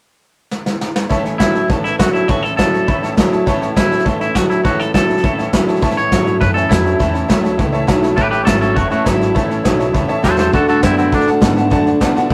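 Rollicking and rowdy, this rough rehearsal-room rockabilly cut opens with a brushed drum fill at 0.5 seconds from a distant, roomy kit with a tight kick. At 1.1 seconds a slightly broken-up electric guitar riff joins, along with a jangly, detuned honky-tonk upright piano and a picked steel-string acoustic guitar tucked in the background, and moments later a clean, twangy electric guitar takes the melody up front. A woody, thumpy pizzicato upright bass on gut strings enters at 5.8 seconds, and the harmony moves from A to D near the end, with another drum fill late in the cut.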